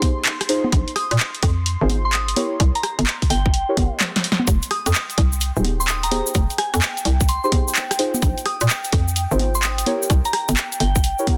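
A tight, layered kick sits up front in this soulful, bouncy two-step UK garage excerpt at 128 BPM in F minor with a swung sixteenth-note feel, joined by a punchy, tape-toned analog drum machine of snare, handclaps, hi-hat, rim click and congas, a hollow, knocking FM bass with tube saturation and sidechain pumping from 0.7 seconds, deep, mellow chorused chord stabs with tape echo moving through rootless Bb9sus4, C7b9 and Fm9 voicings, a soft, pure FM bell melody from 1.0 seconds, an ethereal, airy pad glowing in the background with ensemble chorus, and a grainy, close cabasa that arrives at 4.5 seconds straight after a drum fill, all in a dense, heavily limited modern mix with light reverb.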